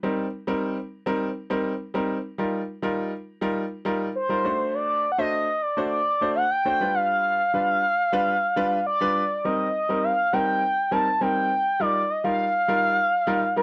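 Funk with a late-night, danceable mood, this short cut from a longer piece opens on a worn, deep-bassed concert grand piano comping through Cm7 and F9sus4 chords, before an expressive, nasal sawtooth synth lead with chorus and vibrato enters up front at 4.2 s to carry the melody in a light reverb.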